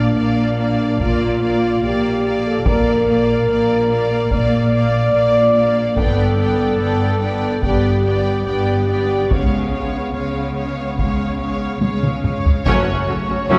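Warm French horns hold sustained chords over lush, vibrato-rich bowed strings, with a distant violin melody, an expressive second violin line, smooth violas in the background, and focused cellos and woody double basses beneath, while heavy-stick taiko drive this heroic, relentless epic orchestral film cue at 72 BPM through Bb, G and C#7 and a drum fill from 11.8 seconds, until a band accent on F# minor at 12.7 seconds adds dark, punchy trombones, a background string chord, soft-attack mellow trumpet stabs, a roomy tuba and round soft-mallet timpani, all in a reverberant scoring-stage sound heard from further back.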